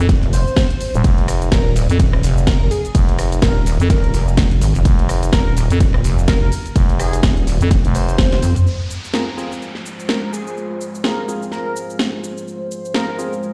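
A growling, thick FM bass and a pulsing, detuned wobble bass drive this gritty, bouncy bass house cut, both pumping against a punchy electronic kick and a tape-warm house kit with a cracking snare, cabasa, hi-hat, ride, rim click and toms, all heard in a large, reverberant room. An airy, dreamy lead with chorus, delay and vibrato floats softly above from the start. After a drum fill, the basses and kick drop away at about 8.7 seconds, while the house kit and the lead carry on beside an evolving, full-bodied pad with a filter swell, a downlifter, and hollow, percussive organ stabs drenched in lush chorus and delay.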